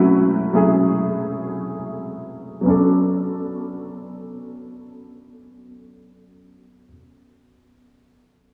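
In free time and B minor, this late-night, longing R&B fragment cut from a longer piece sets a dark, intimate baby grand piano up front, its keys' action noise audible, voicing F#m9 through a filter sweep before settling onto Bm9 at 2.7 s, with ensemble chorus and a low-pass filter on the piano and a dreamy mix steeped in lingering church reverb over small room ambience.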